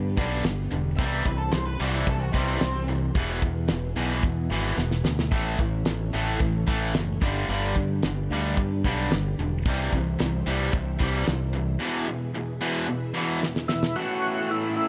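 A straight 4/4 groove from a dry, fat-snared 70s drum kit and a punchy fingered electric bass drives this sunny, swaggering classic rock passage, where two bright, picked overdriven electric guitars riff over G, C, E and A chords, a dark octave-fuzz lead guitar adds a brief second line from 1.0 to 2.9 seconds, a mellow string machine cello pad sustains chords in the background with ensemble chorus, and a gritty tonewheel organ with slow rotary speaker takes up the melody at 13.7 seconds as the harmony lands on Aadd9, all in light small-room reverb.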